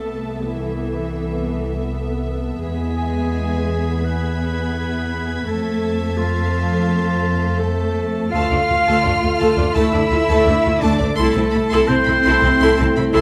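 Up front, a bowed double bass section anchors this eerie, ominous suspense-film cue at 84 BPM in A harmonic minor, joined by an intimate cello section on the bass line, a pure, floating viola accompaniment, and soft sul tasto violin sections carrying the melody and a second line in the background, while a clear, distant solo clarinet adds its own line over dark, roomy French horn chords, a bright, ringing harp gives background texture apart from a gap between 5.5 and 10.5 seconds, and a further high violin section enters at 2.6 seconds, all within light reverb in a fragment cut from a longer piece.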